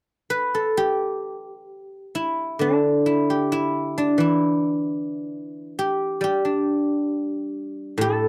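A solo guzheng carries this brief fragment of a longer Chinese traditional piece, entering at 0.3 seconds and sounding until 8.3 seconds. Played with fingerpicks, the acoustic instrument has a silvery, ringing tone and sits up front, spanning a range from A2 to B4. The mood is elegant and serene, with a slow, rubato feel that floats loosely over a 4/4 metre. The instrument is tuned slightly below standard pitch, to A4 = 437 Hz. The close, dry, 1970s-style studio sound carries only a light touch of reverb, keeping every plucked note intimate and clear.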